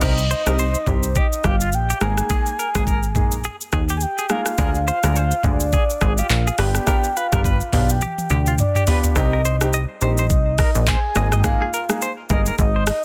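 A swung, mellow afrobeats groove rides on an up-front electronic drum kit of knocking kick, metallic hats, handclaps, rim clicks, shaker, toms and crash, with a drum fill from 8.0 to 9.2 seconds, alongside a punchy, funky analog bass built from sawtooth and pulse waves with a plucky, decaying filter attack. A polished baby grand piano supplies chords beneath a bright, twangy, clean electric guitar riff treated with tremolo and tape echo, while a round, dark synth lead with a sub-octave layer carries the melody with chorus and vibrato. The dry, dense, heavily limited mix keeps this smooth excerpt close from start to finish.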